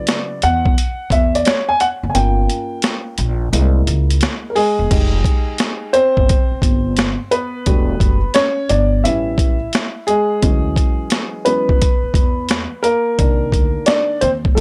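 Jazz-hop cut from a longer hip hop piece, smoky and nocturnal, with a swung sixteenth-note feel and a dry, gritty hardware sound. A dark, mellow upright piano with audible action noise takes the lead throughout, moving through lush jazz chords such as Dmaj13, Fm9 and Em11. A woody, growly pizzicato upright bass enters at 0.4 s, and a compressed, pitched-down sampler-style kit with a thumpy kick, high-tuned snare, hi-hat and crash sits up front; the kick drops out from 2.1 to 4.9 s, and a new section begins at 4.9 s.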